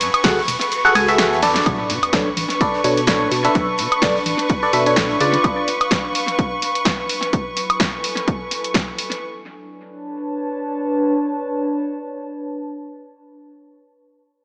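Energetic, soulful piano house cut from a longer piece, swung on a 4/4 groove, where a biting, phased FM electric piano riff with sampler grit leads over distant, vibrato-rich violin chords, a hollow organ-like FM bass, a punchy tape-warm kick and analog drum machine with delayed cabasa and woodblock, a very quiet loose acoustic kit, a faint sub drop at 1.7 seconds, and a warbling, nostalgic chorused pad that carries on alone to 13.8 seconds, all in an echo-heavy plate-reverb mix with a small-speaker sound.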